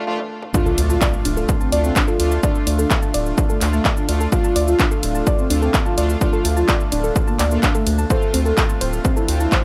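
Lightly reverberant digital ambience frames this melancholic, driving melodic techno excerpt at 127 BPM in D minor, which opens on a short break with a drum fill from a punchy analog drum machine before the drop at 0.5 seconds brings in an up-front, tape-toned electronic kick, a very quiet impact and sidechain-pumped layers. A deep, round analog bass anchors the low end beneath bold, brassy analog synth stabs with dub echo, a soft octave-layered synth lead with phaser and digital delay sitting in the background, and gentle, detuned pluck arpeggios. A moody analog pad enters at 1.8 seconds and a resonant, overtone-sweeping drone at 2.7 seconds, both very quiet, as the harmony holds on Dm before shifting to F/D.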